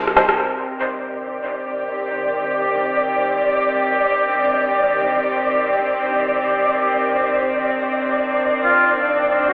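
Brooding and dark, this short dubstep passage in C minor, cut from a longer piece, drifts in free time over a single C minor chord. A tense, string-like drone opens at the start and holds sustained chords from C3 to Bb4, its bright sawtooth edge roughened by a noise layer and ring modulation, with vibrato, slow attacks and long releases keeping it up front. From 0.9 seconds a flickering, grainy texture settles in around D5, mellow and detuned, its granular shimmer bathed in its own reverb. Only at 8.6 seconds does a warm duduk appear, singing a folk-style solo between F4 and G4 with scooped notes and vibrato, distant and roomy yet up front, trailed by dub echo. The whole mix sits in a wet spring reverb and a stone room, heard as if played on a big sound system in a bare space, with a telephone-like tone.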